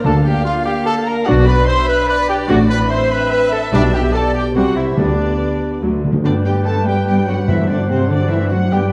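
In a brisk, straight 3/4 at 146 BPM, this spirited, cheerful classical-period movement in G major for symphony orchestra is cut from a longer piece. Veiled, con sordino chamber violins carry the melody over muted symphonic violins, a clarinet and a cor anglais on second lines, while chamber violas, cellos and an up-front double bass section, all muted, ground the harmony beneath mellow sustained French horn chords. A distant trumpet adds stabs until 5.8 s, close, dry timpani with hard mallets punctuate and fill just before the second section, and a pure-toned large flute ensemble joins at 6.2 s, all within a dark scoring-stage reverb.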